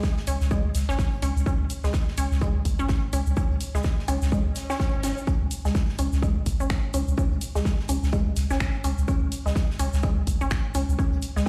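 Cool and quirky, this short minimal techno cut from a longer piece moves at 126 BPM in 4/4 with a 16th-note swing. An up-front, punchy layered electronic kick drives it from the start, joined by a grainy, close and dry egg shaker in the background and an acoustic kit's hi-hat and snare, played with bundle sticks, its hats pumping against the kick and filtered thin. From 0.3 seconds a round, deep analog bass sits up front with a dark, sustained tone, a filter sweep and sidechain pumping, while a juicy, squelchy blip pluck carries the riff with a detuned, resonant bite, chorus and digital delay. A punchy analog drum machine adds finger snaps and hi-hat beneath. Around 4.1 seconds a background woodblock sounds through dub echo, and an electronic swell appears from 4.5 to 5.3 seconds. The whole mix sounds as if played on a big sound system in a bare stone room, giving it a roomy, reverberant edge.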